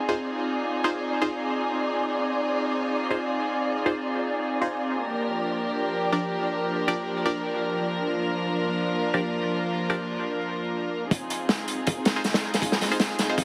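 This dark, nostalgic drum and bass cut, taken from a longer jungle piece at 159 BPM in F dorian, opens with a warm studio string section bowing soft, floating sustained chords sul tasto, up front, alongside an airy, breathy wind-like noise texture drifting in the background on its own built-in reverb. A band-passed sawtooth chord stab arrives almost at once, nasal and bright with a fast, decaying attack, sitting farther back and colored by phaser and dub echo. Underneath, the harmony moves from Fm7 to Gm/F at 5.1 seconds and returns to Fm7 at 11.1 seconds. At that point the wind texture stops and a crunchy, saturated breakbeat kit enters up front for a short build-up, with a punchy kick, a medium-tuned snare and hi-hats, all gritty with a rolled-off top and a small-room feel. The whole mix sits in a moderate echo-chamber reverb with a heavily compressed, radio-like sound dusted with vinyl crackle.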